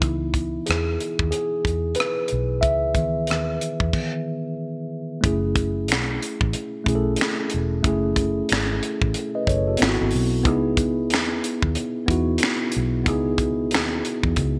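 R&B and neo-soul in a soulful, smooth mood at 92 BPM with a swung sixteenth feel in F# dorian, where a mellow, clean tine electric piano sits up front and takes a solo turn through the opening section with a stop at 3.9 s, over a dark, round, foam-muted fingered electric bass and a tight, up-front funk kit of high-tuned snare, tight kick, hi-hat, rim clicks, finger snaps and crash cymbal treated with gated reverb, moving from C#m9 to F#m9 at 5.2 s and through an altered G#7 back to C#m9, all under a moderate plate reverb and a bright 1980s-style digital sheen.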